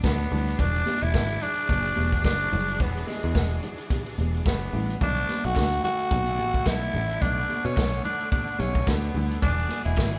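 A swung sixteenth-note disco groove in 4/4 drives this sultry, danceable clip, cut from a longer piece, with a vintage acoustic drum kit up front: a punchy kick, a medium-tuned snare and hi-hat, all with a natural, rolled-off top. A picked electric bass sits low with a dark, round, foam-muted tone, while high-tuned congas ring in the background. Over this, a raspy, growling tenor saxophone carries the pop-style solo melody up front, gritty yet clear, with light vibrato. A bowed string section holds smooth, intense sustained chords behind it, moving between Bm7 and E9. At 5.6 s a very quiet group handclap joins, crisp and close, and the whole band sounds as if playing live together in one large studio room with moderate reverb.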